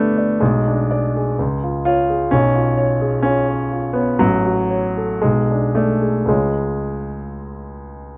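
This is a romantic classical character piece for solo piano, a short fragment cut from a longer work that runs 8.2 seconds. The mood is stormy yet bittersweet, moving at a slow 52-66 BPM in 2/4 with a freely breathing rubato feel. The grand piano carries everything alone, its tone warm, polished and up front, spanning from a deep G1 to D5. The harmony circles through G#dim/B, C#, C#7/B and F#m/A before returning to G#dim/B and settling on C# at 6.3 seconds. Close, detailed microphones and a nearly dry room keep the instrument present and intimate.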